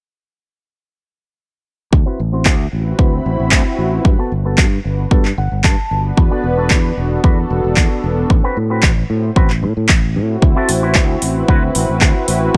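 A bright, twangy electric guitar with an envelope filter carries the riff in this sleek, groovy nu-disco excerpt at 113 BPM, its clean picked tone moving through a filter sweep and a short fill from 5.1 to 6.2 seconds. Underneath, a fingered electric bass with tube saturation sits up front beside a punchy, overdriven electronic kick and a pop drum kit of handclaps and metallic hi-hats, both given a small-room character. A smooth, warbling vintage sawtooth pad with a slow attack and chorus sustains through chords from D13 to Gmaj9, E9sus4 and Am69, all within a digital ambience.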